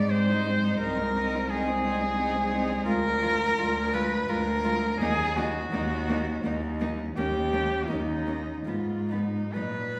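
A wet recital-hall reverb surrounds this ten-second excerpt, a yearning, elegiac classical piece for cello ensemble in Eb minor, moving in a rubato 3/4 at 65-90 BPM over chords from Abmaj7 through Bb7/D to Ebm. Up front, a dark, woody solo cello sings the melody with vibrato, sul tasto, while a second cello traces an airy, soft-attacked inner line and a third, smooth-topped and set in the background, supplies gentle accompaniment. Beneath them, a warm bowed cello carries the bass with light vibrato, close and intimate, throughout the excerpt.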